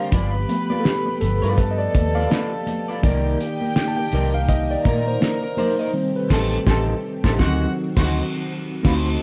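Lush 1970s-style soul in G minor at 82 BPM with a swung sixteenth feel, this smooth, silky fragment features a mellow reed electric piano with fast tremolo taking the lead over a warm, gut-toned violin section with slapback echo, a vintage string machine pad in the background, a slightly broken-up electric guitar riff with analog chorus, a round, foam-muted fingered bass, a cloth-damped thuddy drum kit up front, and bright, high-tuned congas, moving through G7, Cm9, Am7b5 and D7b9, with a band accent from 5.9 seconds and a drum fill at 8.8 seconds, all in a dark, softly reverberant production.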